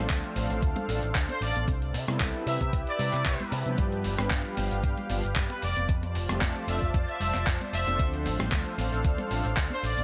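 Nu-disco groove at 114 BPM with a groovy, feel-good mood, built on a thumpy electronic kick, a gritty, overdriven sampler-style kit of handclaps, hi-hat, rim click and shaker, bright high-tuned congas in the background, and a dark, round picked electric bass with an envelope filter, while a mellow, detuned synth brass and a lush, thick unison pad pump under sidechain with chorus and a clear, distant trumpet section carries the melody from 1.3 seconds over chords moving from Dm7 through Cmaj7, G7 and F6.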